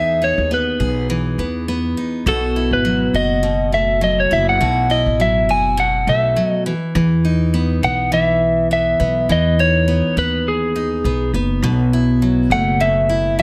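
A compressed, slightly broken-up electric slide guitar carries the melody up front over a full-bodied picked dreadnought acoustic guitar and a woody, thumpy pizzicato upright bass on gut strings, all entering together in this carefree, heartfelt acoustic pop piece with a gentle 16th-note swing. Both guitars sit in plate reverb within a moderate studio room, with the slide played with fingerpicks in a warm upper register. A brief break at 6.4 seconds leads into a second section at 7.0 seconds, where the harmony moves again between a major-seventh chord and a suspended dominant before the piece is cut off.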